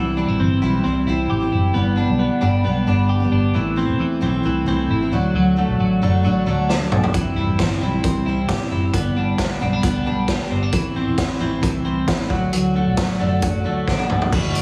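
Jangly indie pop with a restless, bittersweet mood, this straight 4/4 fragment is cut from a longer piece and cycles twice through C, G, Am and D. A chiming twelve-string electric guitar sits up front with clean, compressed arpeggios, coloured by subtle chorus and tape echo. Beneath it a full-bodied jumbo steel-string acoustic guitar picks out the accompaniment, while a vintage fingered electric bass, foam-muted and amped, gives a dark, round and punchy low end. At 6.7 seconds a raw garage drum kit bursts in with a fill, bringing a boomy kick, a medium-tuned snare, hi-hat, toms and crash, all saturated and gritty with a rolled-off top, and another fill arrives at 13.9 seconds. The whole mix carries a moderate echo-chamber reverb and a heavily squeezed, radio-like sound set in a small room.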